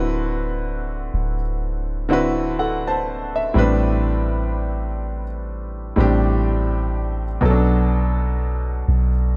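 Moody and longing, this slow contemporary R&B excerpt in A dorian moves at 62 BPM with a lightly swung sixteenth-note feel, cut from a longer piece. A clear, natural concert grand piano carries the accompaniment through the whole 9.4 seconds, its deep low end sitting up front, while a soft, round 808-style bass with a sine-like tone, fast attack and dark decay sits beneath it. Light reverb frames the playing as the harmony moves from D13 to Am11 at 3.6 seconds and Bm7 at 7.4 seconds.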